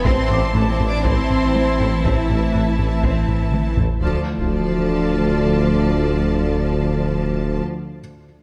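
Tense and brooding, this cinematic hybrid of orchestra and electronics moves at 121 BPM in D minor, shifting from A minor to D minor at 4.0 seconds. Violins carry a high melody and a second line over lush, vibrato-rich violas, cellos and double basses. A deep sub bass, a present tuba and very quiet horn, trombone and airy phased pad chords sit underneath. A tight, punchy sequencer bass riff and a felt-muted upright piano with tape echo drop out by 4.0 seconds, while heavy taiko drums in the background play a fill before stopping at 5.0 seconds, all within a moderate scoring-stage reverb.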